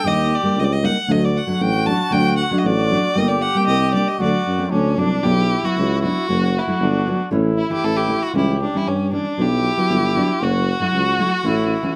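Klezmer in a brisk 2/4 with a straight feel, this short passage from a longer piece is at once bittersweet and festive. A single bowed violin carries the melody up front, its rich, smooth, even tone shaded with vibrato, and a plate reverb gives it a sheen. Beneath it a trombone fitted with a metal mute plays a second line, buzzy and thin with a brilliant edge and its own vibrato. A nylon-string guitar fingerpicks the accompaniment in a dark classical manner, with finger squeaks audible, while a mellow tuba holds the bass with light vibrato and scooped notes, sounding distant and roomy in a jazz style. At 5.2 seconds the harmony shifts from the opening Eb-to-D and Gm movement into a new section cycling through Bm, F#m, A and C#dim, all heard in a moderate studio ambience.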